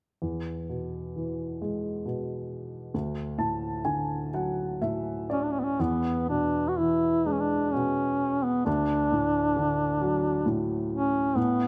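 Close, detailed and lightly reverberant, this pastoral, nostalgic Celtic slow air in a rubato 3/4 opens on a dark, woody upright piano with audible action noise, which plays a fill from 2.9 seconds before a mellow duduk with vibrato enters up front at 5.3 seconds, over chords moving between E and D.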